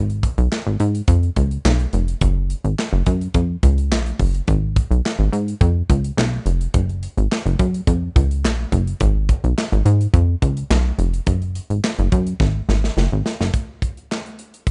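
A straight 4/4 groove at 106 BPM drives this short cut from a longer early-eighties boogie funk piece, with a slick, late-night mood. A plucky analog bass sits up front, its sawtooth and square-wave tone shaped by a filter pluck with a fast attack and decaying notes, giving a punchy, funky line that moves between E#1 and G#2 until 13.5 seconds. A modern studio drum kit with an acoustic, mid-forward sound supports it, pairing a punchy kick and a medium-tuned snare with hi-hat and handclaps. A drum fill arrives at 12.4 seconds, leading into a brief closing section where the drums carry on alone until 14.7 seconds. The recording is dry, with little reverb, and has the rough, dull-topped character of a home demo mix.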